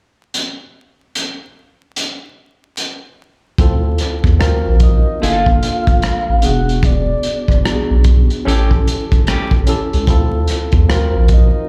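A crunchy, gritty breakbeat kit of hi-hat, tight kick and rim click opens this sultry, introspective slice of neo-soul R&B at 74 BPM with a swung sixteenth feel, heard as if through a club PA with room reverb and vinyl crackle. At 3.6 seconds a deep, round analog bass arrives up front alongside a worn, slightly out-of-tune electric piano, lightly overdriven with slapback echo, moving through Dm9, D7alt, Gm9, E9 and A7. A soft, dark, octave-layered synth lead with chorus, phaser and vibrato then carries the melody, while a clean, picked electric guitar adds a second line until 9.5 seconds.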